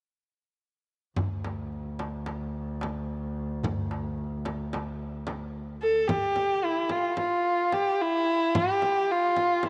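In a straight 9/8 at 220 BPM counted in eighths, this melancholic, longing fragment of a Turkish makam ensemble piece in D makam nihavent, tuned to A4 = 444 Hz, opens at 1.2 s with a bowed double bass droning on D2. The bass is bright, focused and up front with vibrato, beside a crisp, deep metal-shell darbuka that sounds compressed and saturated, and a small, close, dry frame drum struck with hard hands. The darbuka drops out at 5.4 s, and at 5.8 s a rich kamancheh takes up the melody between E4 and A4, bowed with vibrato and portamento, its smooth top carried on tape echo over the frame drum, while a moderate plate reverb surrounds the ensemble.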